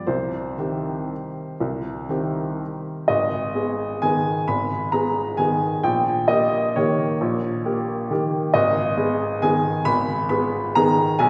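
A clear, woody upright piano plays alone, open and up front in a wet concert hall reverb, carrying this wistful, nostalgic classical waltz in 3/4 with a rubato feel at 115-143 BPM, turning from C minor to G# minor at 3.1 s and passing through D#7/A# at 5.8 s before returning to G#m in a short passage cut from a longer piece.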